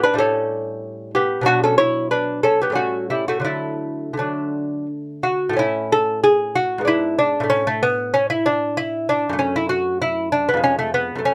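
A solo lute carries this short baroque-style dance in triple time, its fingerpicked gut strings sounding delicate and up front, with the doubled courses and some octave-doubled strings lending a shimmering fullness to each note. The mood is radiant and serene, and the playing moves with a flexible, rubato feel that lets phrases breathe. The lute ranges from F2 up to C#5, and the harmony settles into a new key area at 5.6 s, where the opening phrase begins again. Close, detailed microphones catch the intimate grain of the instrument, set in a light reverb. Cut from a longer piece, the passage ends at 11.3 s on a diminished chord that leaves the music suspended.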